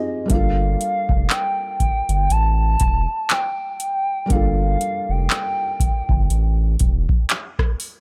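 A gliding, vibrato-tinged lead with chorus and delay opens alongside a soft, felt-muted upright piano with audible action noise, before a round, dark analog bass and a booming drum machine with deep kick, metallic hats, handclaps and rim clicks enter at 0.3 seconds, setting a longing, late-night contemporary R&B groove at 60 BPM with swung 16ths over Gm9 in a digital ambience, the lead dropping out at 6.6 seconds in this short cut from a longer piece.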